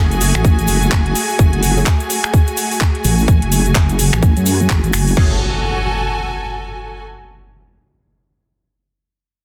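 A swung 127 BPM groove in 4/4 drives this gritty, aggressive bass house fragment in F# minor, built on a tight, up-front electronic kick from 0.4 s and a tape-warm garage kit with metallic hats, snaps, claps and a soft-clipped snare, plus a grainy egg shaker in the background. A dark, nasal vowel-sweep wobble bass with chorus and tube saturation dominates as a filter sweep moves through it, while a bright, evolving resonant pad sustains an F#madd9 chord behind a lush, bowed studio string section with vibrato, both breathing with sidechain pumping. A very quiet, band-passed chord stab with phaser flickers at 1.8 s and again at 5.2 s, and an electronic impact lands at 5.3 s as the strings ring on to close this dense, heavily limited passage.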